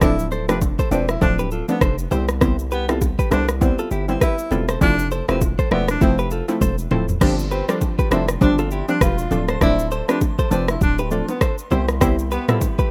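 A swung 100 BPM afrobeats groove from an up-front electronic drum kit with a deep kick, rim clicks and shaker, a punchy, heavy 808-style bass and very quiet hard-handed congas and bongos carries this joyful, breezy cut in G mixolydian, where a breathy, intimate tenor saxophone sings a jazz-style solo line with vibrato and scooped notes through tape echo over a detuned sawtooth pluck with chorus and a filter sweep and a clean, direct-recorded electric guitar riff, until a drum fill at 6.6 seconds ushers in an airy, very quiet flute group holding sustained chords from 7.2 seconds, all in a dry, rough home-demo mix.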